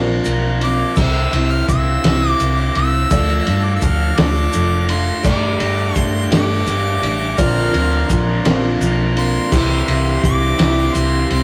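A rough rehearsal-room recording with moderate studio reverb frames this wistful, reflective folk rock and heartland rock excerpt, which moves at a slow 56 BPM in a straight 6/8. A bright harmonica carries the melody from 0.6 s, its light vibrato and scooped notes giving the line a pop-style, singing quality high in the register. Underneath, a picked, full-bodied jumbo steel-string acoustic guitar plays alongside a round, hollow-body short-scale electric bass that sits up front, joined by a cloth-damped drum kit that sounds thuddy, muffled and gritty, with a fat snare, tight kick and dark cymbals. A reedy accordion holds sustained chords in the background, a woody, boxy upright piano adds very quiet accompaniment, and a grainy egg shaker ticks along at the edge of the mix. At 5.2 s a crunchy, double-tracked overdriven guitar with phaser enters with a riff in the background as the harmony moves through Bbadd9, C, Dm and Gsus2 before returning to Bbadd9 and C.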